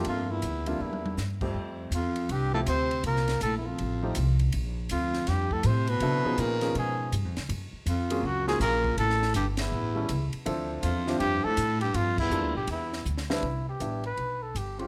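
A swung eighth-note feel in 4/4 drives this short jazz excerpt of small-group swing and bop, with a relaxed, warm mood. A compact cocktail drum kit sits back in the mix with dry, dark cymbals, a high-tuned snare and a punchy kick, adding brief fills near the start and just before the close, while a woody, thumpy pizzicato upright bass sits up front. A polished baby grand piano with short sustain supplies the chords, moving through a progression that touches Bbmaj7, Db7, Gbmaj7 and A7 before arriving at Cmaj7. Over this, a breathy trumpet carries the melody with light vibrato and scooped notes, while a close-miked, clear baritone saxophone adds a low second line with its own vibrato and scoops until it drops out at 13.0 seconds. The band hits accents together at 9.5 and 12.1 seconds, and a moderate large-studio reverb gives the group a roomy sense of space.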